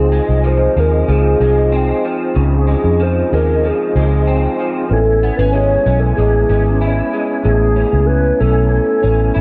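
Indie and bedroom pop with a sunny, hazy mood, cut from a longer piece, where a hollow, woody clarinet-like synth lead carries the melody through lush chorus and slapback echo across all 9.4 seconds. Beneath it, a slightly broken-up, lo-fi electric guitar through a small old amp and a mellow, flute-like percussive tonewheel organ with chorus vibrato and slow rotary speaker fill out the harmony, moving from Dbmaj7 to Amaj7 at 4.9 seconds. A round, punchy, foam-muted electric bass sits up front, and light reverb softens the whole.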